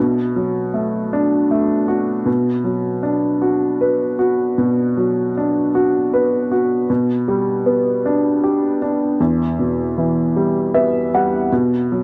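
A woody, up-front upright piano plays alone in this reflective, heartbroken folk fragment in an unhurried 6/8, moving from Bm7 through Bm, G/B and Em before coming to rest on B5 at 11.5 seconds, all of it set in a moderate plate reverb with a dark, warm production and cut from a longer piece.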